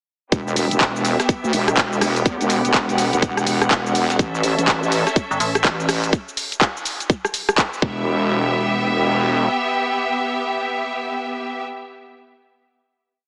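A gritty, swaggering bass house piece opens straight into its drop at 0.3 seconds: a tight, up-front four-on-the-floor kick, an overdriven house kit of bright hats, clap, rim and cabasa, and a very quiet looped breakbeat with a gritty, tape-warm snare, all under a lush, biting symphonic string pad that pumps against the beat. Beneath it, a heavy, saturated wobble bass with chorus rolls through modulated phrases of changing wobble speed as the chords move from Em to A and back. A brief metallic FM bass stab cuts in at 5.3 seconds, and from 8.1 seconds the strings ring on over the last of the wobble bass as a final hit, all squeezed into a heavily compressed, small-speaker radio sound with a hall reverb.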